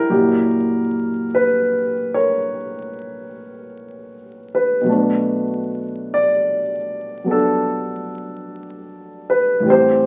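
Swung eighths in a slow 4/4 at 50 BPM carry this tender, late-night jazz ballad fragment, where a solo concert grand piano sits up front with a warm tone, deep bass and short sustain, ranging from F#2 to G5 as it moves from F#7b9 to Bm7 at 4.9 seconds, all bathed in wet studio reverb and the crackle of a very old 78 rpm record.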